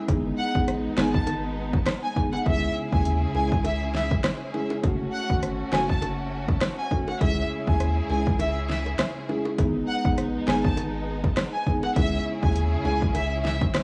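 Worn, warbling cassette tape with a warbly pitch drift and light small-room reverb colours this hypnotic, bouncy dancehall excerpt at 101 BPM in C# minor, swung on the 16ths. Up front, an overdriven deep house kit with punchy kick, fat snare, hi-hat and rim click sits over a round, deep, nasal analog bass, while tight, high-tuned bongos stay in the background. A woody marimba with medium mallets and sustained, portamento-laced symphonic strings both pump with sidechain, and above them a lush, distant violin section carries the melody with vibrato through a digital delay as the chords move from G#m to C#m and F#m.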